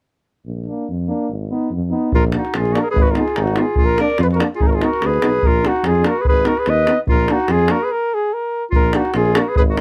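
Close, detailed microphones and very little reverb give this Balkan brass band excerpt a dry, immediate sound, though the tuba and euphonium sit a little further back in a roomier space. It is a fiery, virtuosic Balkan folk tune at 145 BPM in 2/4, with a lightly swung sixteenth-note feel in Bb phrygian dominant, trading between Bb and Abm chords. A soft-attacked tuba with light vibrato opens the bass at 0.5 seconds, and a punchy euphonium and a vibrato-touched trombone join as accompaniment just after. At 2.1 seconds a mellow flugelhorn takes the up-front melody in classical style, a clear clarinet adds a second line, and a tight, compressed, saturated davul drives the percussion. The band breaks for a stop at 7.9 seconds before coming back in on Bb to close the passage.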